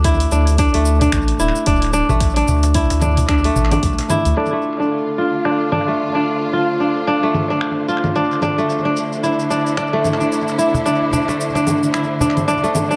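An echo-heavy mix with spring reverb opens this meditative, earthy organic downtempo excerpt with a crisp, fingerpicked kora playing ringing arpeggios up front through tape echo, over a round sine sub bass and a layered electronic kick that both drop out after the opening seconds, a filtered deep house kit of cabasa, congas, finger snaps and hi-hat, and a very quiet, pure quartz singing bowl, with a woody cajon joining in the background after a second, before lush bowed strings with vibrato and portamento bring sidechain-pumped Dm7 chords and a filter sweep on the drums at 4.4 seconds, and a faint electronic swell arrives at 12.3 seconds.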